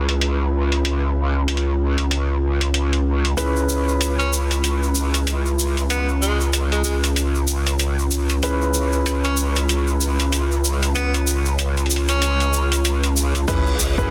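A swung 95 BPM glitch hop groove in 4/4 drives this gritty, swaggering C# minor excerpt, its sampler-style boom bap kit sounding pitched down and compressed, with filtered hi-hats and crash cymbals. A growling, saturated bass sits up front from the start, sustaining low notes with a chorus sheen over the lone C#m7 harmony. Behind it, a dark baby grand piano plays mellow stabs, softened by a low-pass filter, sidechain pumping and delay, its action noise audible in an intimate way. A grainy, bright tube shaker joins at 3.4 seconds, and at 4.2 seconds an edgy tenor saxophone takes a forceful, jazz-style solo with vibrato and delay. The piece closes on an impact at 13.5 seconds, where a punchy layered electronic kick and a sub drop land inside a dense, heavily limited mix with light small-room reverb.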